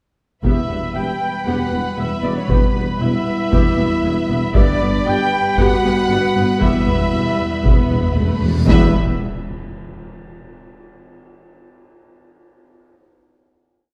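Epic orchestral film score in E minor at 116 BPM, relentless and driving, with an up-front, saturated taiko ensemble pounding a big drum ostinato under lush bowed violins carrying the melody, a second violin line, bright trumpets doubling the tune at the octave, and dark French horns and bright trombones holding sustained chords. Rich violas churn a rhythmic ostinato in the background, while cellos, double basses and a distant, very quiet tuba anchor the bass, all heard from further back in a reverberant recital hall. Timpani enter at 6.6 seconds for a fill, and a huge, dark reverse cymbal and low impact carry the piece into its final chord at 8.7 seconds.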